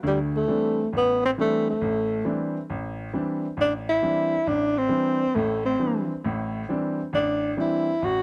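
Dry and close, with a touch of light reverb, the recording has the intimate feel of a 1970s studio session, and this brief fragment is cut from a longer piece. It is a searching, spiritual jazz performance in 4/4 with a swung eighth-note feel. A clear grand piano opens at 0.0 s and carries the accompaniment over a single D9sus4 harmony, reaching from its low bass register into the middle of the keyboard, with the natural sound of its action audible up close. At 0.1 s a breathy tenor saxophone enters to carry the melody as the solo voice, sitting up front and above the piano in level. Its tone is dark and whispered, with subtone, vibrato, soft attacks, scooped notes and a smooth top end, giving the line a hushed, inward quality. Both instruments play together until the fragment ends at 8.2 s.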